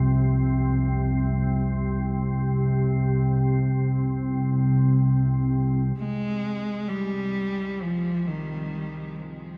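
A calm, organ-like drone of sine tone with a wave-folded edge opens this dark ambient fragment at 0.0 seconds, sustaining low in C minor in free time, with ensemble chorus and its own reverb giving it a slow-blooming, cavernous weight. At 6.0 seconds a single bowed cello enters up front with a smooth, even line and vibrato, its warm tone trailed by tape echo until it stops at 9.2 seconds. A wet cathedral reverb with a 5.4-second decay surrounds the dark production, leaving an unsettling, hollow stillness.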